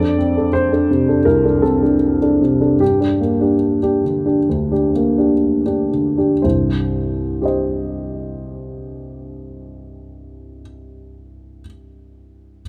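A dark grand piano plays alone from the start, opening on a rootless F6 chord that moves to G minor at 2.8 seconds while the pace slows, all in a rubato neoclassical minimalist vein. The piano sounds mellow, worn and boxy, placed up front and intimate with audible action noise, and it sits in a moderate plate reverb. A new passage arrives on C minor at 6.4 seconds, keeping the melancholic, wistful mood of this fragment cut from a longer piece, which ends at 12.6 seconds.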